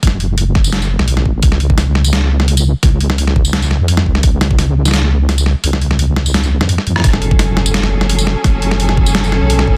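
A dense, heavily limited modern master with little room sound frames this dark, cinematic piece of half-time drum and bass, cut from a longer track at 171 BPM in 4/4 and set in F# harmonic minor. A deep, soft wobble bass sits up front throughout, its detuned sawtooth and sine tone sustained and compressed, with a chorus effect and a dark character. A gritty, pitched-down boom bap sampler-style kit supplies hi-hat, rim click, a medium-tuned snare and tambourine with a compressed, upfront presence, while a knocking, tape-tinged electronic kick drops away at 4.6 seconds and returns at 7.0 seconds after a drum fill. At that return a clear symphonic string section enters with lush, bowed ensemble chords on F# minor, focused and smooth on top with vibrato and a sidechain pumping effect. At 9.0 seconds a very quiet, eerie FM drone appears, metallic and inharmonic, warbling through chorus and phaser with a mellow vintage cast.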